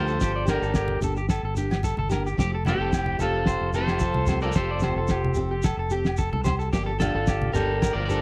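A straight 4/4 groove at 110 BPM drives this joyful highlife guitar band excerpt in F major, where a cloth-damped, thuddy drum kit with a fat snare and tight kick anchors a round, up-front fingered electric bass. A twangy, slightly broken-up electric guitar carries the melody while a second electric guitar plays arpeggios through slapback echo. A picked steel-string acoustic guitar with audible finger squeak provides accompaniment, and a clear, punchy trombone with light vibrato adds a second line in the background. Grainy shekere enters at 0.1 seconds, ringing agogo bells sit farther back, and low-tuned congas join at 0.9 seconds, all over a Gm, Fadd9 and Gm7 progression in a dry, close 1970s-style studio sound with light reverb.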